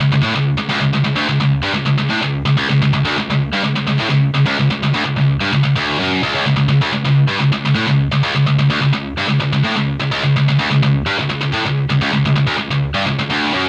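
A straight 4/4 pulse at 127 BPM drives this aggressive, epic metal excerpt, where a lone heavy high-gain electric guitar, bright, scooped and double-tracked with distortion, plays picked lines between C#2 and A2 up front for the full 13.7 seconds, set in light reverb on a home cassette recording.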